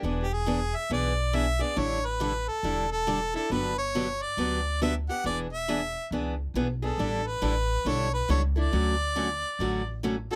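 Acoustic string swing in the jazz manouche style, this charming, swinging excerpt moves at 138 BPM, with a bright, up-front harmonica carrying a jazz-style solo melody full of light vibrato, soft attacks and scooped notes from 0.2 seconds, over a boxy, picked parlour steel-string acoustic guitar accompaniment and a woody, thumpy pizzicato upright bass on gut strings, all captured by close, detailed microphones with light reverb as the chords cycle through E7, A7sus4 and Gmaj7 before settling on Dmaj7.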